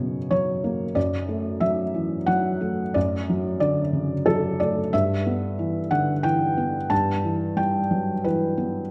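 A felt-muted upright piano plays alone from the first moment, opening on an F# harmony with a soft, mellow tone and the audible mechanical noise of its action sitting up front. This brief fragment of a longer neoclassical minimalist piece moves at 91 BPM in a three-beat metre with a rubato feel, setting an intimate, wistful mood. The harmony moves to D over F# at 1.0 seconds and then to E minor over G at 4.9 seconds, with the playing ranging from F#2 up to A5. The thick felt dulls each note into a hushed, muffled sound, and the solo piano carries on to 8.9 seconds. A moderate recital-hall reverb gives the close, private sound a gentle sense of space.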